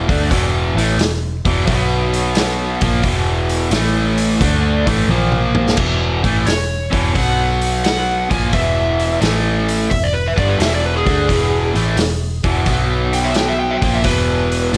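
Lightly reverberant and raw, this swaggering, driving blues rock and southern rock power-trio groove rolls at 87 BPM in a swung 4/4, with a bright, double-tracked, overdriven garage guitar riff up front over a dark, round, foam-muted fingered bass and a vintage acoustic drum kit in a pumping small room with dark cymbals and a punchy kick, whose fill at 5.1 seconds opens the solo section at 5.8 seconds, where a slide guitar played with fingerpicks and carrying its own overdrive enters at 6.5 seconds and sings through the end of this cut from a longer piece.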